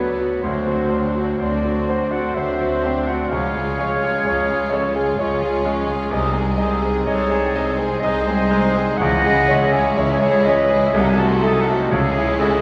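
A slow, rubato 3/4 pulse at 63 BPM carries this passionate, brooding romantic movement for piano and orchestra, an excerpt cut from a longer piece that settles into C# minor from 6.1 s. The up-front concert grand piano leads with a polished, deep-bassed melody, shadowed by a lush violin section, while a pure flute group, a second, intense violin section, a mellow clarinet and a distant, roomy oboe weave second lines alongside a very quiet viola section, a soft bassoon, hushed French horn chords and loose trumpet stabs. Rich cello and double bass sections anchor the bass, hard-mallet timpani enter at 9.0 s, and the whole ensemble sits in the generous reverb of a concert hall.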